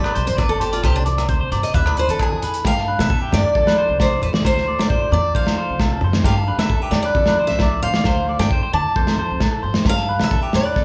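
Carefree and sunny, this highlife guitar band excerpt opens with a boxy, up-front picked steel-string acoustic guitar soloing over the band, then carries its melody into the second section while a twangy, slightly broken-up electric guitar plays phaser-tinged arpeggios, a full-bodied fingerpicked nylon-string guitar with finger squeak accompanies in the background, a woody pizzicato upright bass thumps underneath, a muffled, gritty soul drum kit with tight kick and rim click sits up front, and ringing agogo bells and very quiet hard-handed congas add percussion, all played live in one room with a moderate large studio reverb.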